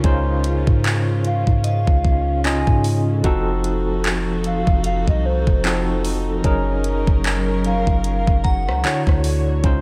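Contemporary R&B at a relaxed 75 BPM in 4/4, with a lightly swung sixteenth-note feel, this short excerpt in Db major has a dreamy, smooth mood. A barky tine electric piano sits up front as accompaniment, lightly overdriven through a combo amp with a medium tremolo, while a studio string section holds soft, bowed sustained chords played sul tasto for an intimate, close sound. Underneath, a round, sine-like 808-style bass gives deep, decaying notes, and a produced electronic drum kit with a knocking kick, handclaps, hi-hat and rim click sounds up front, re-recorded in a small room. A very quiet, crystalline FM synth bell adds texture, and at 1.3 seconds a hollow, woody clarinet-like synth lead enters with the melody, warbling with vibrato, chorus and tape echo. The harmony moves from Dbmaj7 to F7b9, then Gb6, and ends on Dmaj7, all wrapped in a digital ambience.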